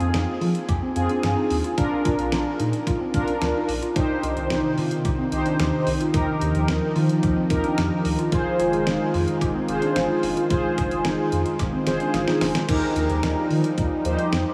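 Bright and nostalgic, this synth-pop passage from a longer piece moves at a straight 110 BPM in 4/4 over chords like Fmadd9, Bb, Cm, Ebadd9 and Fm. Mellow synth brass sits up front with the accompaniment, its detuned sawtooth tone brassy and rounded, touched with vibrato and chorus. Underneath, a round analog bass gives a deep, sine-like foundation, while a clean 12-bit digital drum machine supplies a thumpy kick, fat snare, hi-hat and crash, with a drum fill at 11.6 seconds. A warbly, dusty pluck plays lo-fi arpeggios in the background through chorus and tape echo until 12.7 seconds, and a smooth analog pad enters at 4.0 seconds with slow-attack sustained chords colored by chorus and phaser. The whole mix is soaked in a huge, dreamy ambient reverb.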